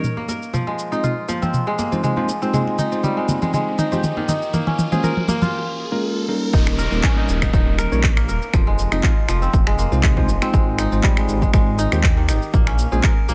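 An afro house excerpt in Bb dorian at 120 BPM opens on ringing, fingerpicked kora arpeggios and bell-like electric piano stabs with a gritty 12-bit edge, both pumping against the sidechain and trailed by tape echo, over a layered house kit of cabasa, finger snaps, handclaps and toms, with background congas for most of the build-up. A riser and downlifter carry the build toward a short break at 5.5 s, and at 6.5 s the drop lands with a punchy, up-front kick and a deep, rumbling detuned saw bass, all in light digital ambience. The mood is hypnotic and spiritual, cycling through Eb7, Fm7, Ab6 and Bbm7.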